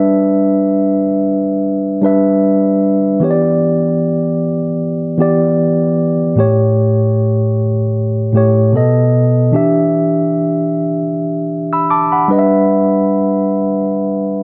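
A slow 76 BPM pulse in 4/4 sways with a light swing on the sixteenths, setting a sensual, moody R&B tone in E dorian across this brief 14.4-second fragment. A mellow tine electric piano plays alone from start to finish, clean and up front with the character of its built-in speakers, spanning A2 to E6 as it moves through G6, Em7, A7 and B7 before settling back to G6. A moderate plate reverb and a dark, warm production wrap the piano in a dusky glow.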